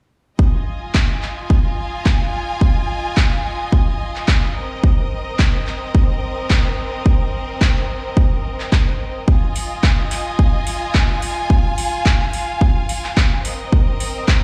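Nu-disco at 108 BPM in F minor with a cosmic, groovy mood and a light 16th-note swing, this short section cut from a longer piece moves between Fm7 and Cm7. A punchy, up-front electronic kick drives it from 0.4 seconds, joined at 0.9 seconds by a house kit of handclaps and metallic hi-hats, while a clear, distant violin section holds sustained, bowed chords with vibrato that pump under sidechain compression. The drums carry a tape-warm, layered sheen, and the mix plays as if on a big sound system in a bare room, with a large studio reverb around it.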